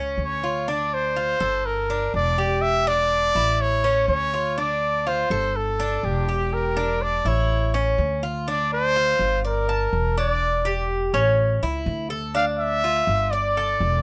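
A straight 4/4 pulse at 123 BPM carries this sultry, nostalgic slice of Cuban son and guajira in D minor, cut from a longer piece. The upright bass and the Cuban tres start together at 0.0 seconds, the bass plucked pizzicato with a woody, thumpy tone on steel strings, and the tres picking arpeggios on its double strings with a metallic edge and some octave-doubled strings. A breathy trumpet joins at 0.2 seconds to carry the melody as a close-miked solo, mellow and whispered, with a soft attack, vibrato and an intimate, pop-style delivery that sits a little louder than the other two parts. The harmony moves through chords such as Dm7, Em7b5 and A in the opening section, then shifts at 8.5 seconds to a second passage touching Gmadd9 and closing on Gsus2. All three instruments sound up front, with light reverb giving the trio a touch of space.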